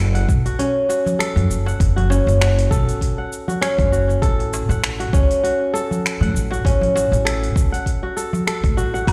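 Organic downtempo with a meditative, hypnotic swing, built on bright, ringing fingerpicked kora arpeggios colored by a low-pass filter and delay over a woody, dark, sidechain-pumped pizzicato upright bass and a deep, overdriven electronic kick, while a crisp, close and dry metal-shell darbuka struck with hard hands and a layered deep house kit of cabasa, finger snaps, metallic hi-hats and woodblock, also overdriven, sit lower in the mix, the whole passage sounding as if played on a big sound system in a bare room with large studio reverb.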